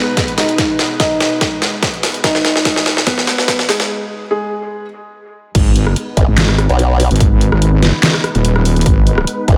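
A soft, felt-muted upright piano melody with dub echo opens this menacing, aggressive heavy wobble dubstep excerpt in G# minor at 145 BPM in a half-time feel, over a lush, detuned supersaw pad pumping beneath a low-pass filter, while a punchy electronic kick and a dubstep kit with a deep snare, handclaps, rim clicks, hi-hats and crash cymbal push through a build-up, drum fill and break before the drop at 5.5 s unleashes a saturated, overdriven wobble bass and, from 6.2 s, a formant-sweep wobble bass, both chorused and up front in light digital reverb.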